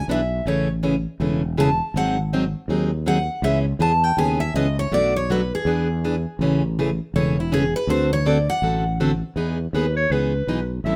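A picked steel-string acoustic guitar opens this charming, playful stretch of jazz manouche, carrying the melody with a bright, full-bodied jumbo tone, fresh strings and audible finger squeak. Beneath it, a growly, punchy fretless electric bass sustains its notes with a direct, amped presence, while a second picked guitar, plugged in and warmer in a concert-body way, supplies the swung accompaniment. The harmony moves through jazzy seventh chords such as Amaj7, C#m7 and D7 before settling on Emaj7. The lead guitar's solo gives way at 9.4 seconds, and at 9.7 seconds a clarinet steps in with a forceful, jazz-style solo line, bright with vibrato yet roomy and set at a distance. A moderate studio reverb surrounds the group, and the passage is cut from a longer piece.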